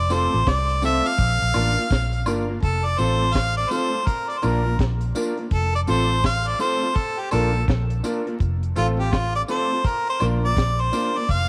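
Roots reggae with a laid-back, uplifting mood, this piece is cut from a longer work and moves in a relaxed swing over a simple alternation of F and Bb chords. A clear harmonica carries the melody up front with light vibrato and scooped notes, and it steps into a solo from 2.6 seconds, its line trailing a dub echo. Beneath it, a vintage foam-muted electric bass sits round and amped near the front, while a deep drum kit plays dry and smooth, with a high-tuned snare and a tight kick. A mellow, clean electric guitar with its own dub echo stays in the background, joined by mellow stabs from a dark grand piano. Tambourine and woodblock add close, acoustic colour in the background, and the whole mix sits in light reverb and small-room ambience under a layer of vinyl crackle.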